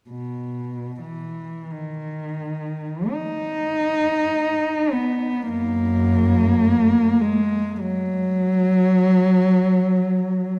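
A single bowed cello, dark-toned and close up front, plays alone from 0.1 to 10.6 seconds in this serene, lyrical classical fragment cut from a longer piece, its expressive free-time line spanning F#2 to D#4 with vibrato and portamento, bathed in a wet church reverb that rings for 3.3 seconds.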